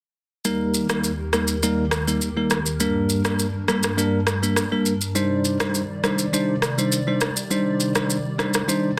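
A straight 4/4 afrobeats groove at 102 BPM in Eb major, cut from a longer piece, sets an overdriven, up-front electronic shaker and rim click under a bell-like, bright tine electric piano and a hollow, flute-like soft pad thickened by ensemble chorus, all drifting joyfully and breezily through Eb, Gm and Cmadd9 in a moderate plate reverb and a dense, heavily limited modern master.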